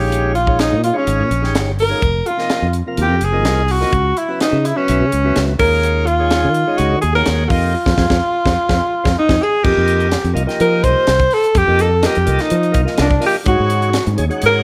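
A straight 4/4 groove at 126 BPM drives this funky, nocturnal stretch of electric jazz fusion: a tight funk drum kit in a small room, with a high-tuned snare and tight kick, sits under a dark, round fretless bass placed up front. A breathy alto saxophone carries the melody with vibrato, subtone and scooped notes through a slapback echo, while a very quiet hollow-body jazz guitar plays a clean, fingered second line in the same register and a smooth tonewheel organ, turning through a slow rotary speaker, fills in chords moving from Bbm7 through Fm7, Dbm7, Ebm11 and Fm11. The band hits an accent from 7.7 seconds, the drums fill from 8.7, and at 9.7 seconds the harmony shifts to F9sus4 and later Ab7sus4, all under light reverb.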